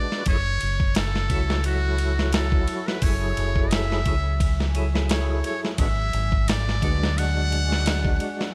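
A brooding, melancholic trip hop groove in F# minor, moving at 87 BPM with a light swing on the sixteenths, cut from a longer piece. A muted trumpet carries the melody from the start, its metal-mute tone buzzy and thin, close-miked in a jazz style with light vibrato and scooped notes, trailed by tape echo. Beneath it a percussive tonewheel organ comps with key click and third-harmonic percussion, colored by chorus vibrato, tremolo, a slow rotary speaker and tape echo. A dusty, sampler-style drum kit sits up front with a thumpy kick, a medium-tuned snare, hi-hat and ride, gritty and compressed as if re-recorded in a large room, while a dark, round dub bass enters at 0.3 seconds and punches just as close. From 2.9 seconds a very quiet, deep ambient pad with a slow attack fills in sustained chords, and the harmony shifts from F#m9 to G#m7b5 at 5.8 seconds inside a bright 1980s-style digital ambience.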